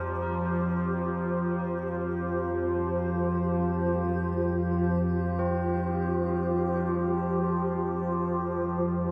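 Desolate and cavernous, this dark ambient drone drifts in free time, a short passage cut from a longer piece that rests on a single Fsus2 chord for its 9.1 seconds. Up front, an analog drone holds the low end from F2 to F3, its nasal sawtooth and pulse-wave tone shifting through pulse-width modulation and a moving notch, thickened by chorus, with slow attack and long release. Beside it sits a granular cloud pad sustaining chords between F4 and C5, a blurred, wave-folded unison of triangle waves that stays mellow and evolving in its own built-in reverb. Further back, tubular bells struck with a rawhide hammer ring out solemn, metallic arpeggios from C4 to Bb4 through tape echo, fading out across the whole passage. The mix is soaked in a huge ambient reverb with an 8.3-second tail, giving the sound a dreamy, hollow depth.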